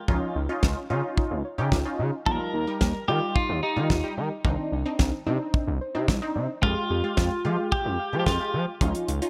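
A clean, compressed twelve-string electric guitar carries the melody up front from 2.3 s, picked through spring reverb and delay, in this wistful yet bright synth-pop piece at 110 BPM that is cut from a longer work. Beneath it, a dry 70s drum kit with a fat snare and tight kick sits alongside a smooth, gliding synth bass with vibrato and portamento, while a punchy, detuned polysynth comps with chorus and a moving notch. A soft, round, dark pluck plays arpeggios in the background with chorus and delay, all over a Dbadd9, Ebadd9, Cmadd9, Fmadd9 progression in a lightly reverberant studio space.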